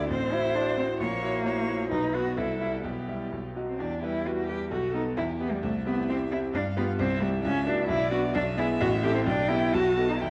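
Violin, cello and grand piano all sound together from the very start of this quick, stormy classical-period movement for piano trio, a short cut from a longer piece in a straight two-beat metre. The solo violin carries the melody with a focused, smooth-topped bowed tone and vibrato, sitting a little further back in the mix than its partners. The cello sits up front with a second line, its bowed sound rich and expressive, shaped by vibrato, soft attacks and portamento slides. The up-front grand piano supplies a brilliant accompaniment that spans from deep bass to the middle treble, its vintage character carrying long sustain. The urgent opening harmony gives way at 3.8 seconds to a new passage that settles on the home minor chord before moving through darker, restless changes and returning toward the dominant at the close. The whole recording rings in a recital hall and is coloured by worn cassette tape, whose warbly pitch drift lends it an aged, unsteady quality.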